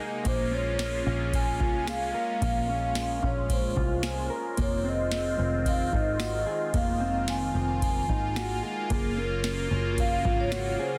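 A booming analog drum machine sets a straight 4/4 pulse at 111 BPM, its deep kick, crisp snare, ride cymbal and tambourine sitting up front, while a round, punchy, foam-muted picked electric bass anchors this melancholic, ethereal dream pop excerpt in Bb minor. A swirling, detuned sawtooth pad with phaser and chorus holds sustained chords under a dark, clean, fingered electric guitar playing arpeggios through subtle chorus and digital delay, as the harmony moves from Bbm7 to Fm7 and then Gbmaj7. Over the top, a vibraphone played with soft mallets carries the melody with a ringing, metallic tone and fast motor vibrato, trailed by digital delay, the whole mix set in light reverb with a dense, heavily limited modern master.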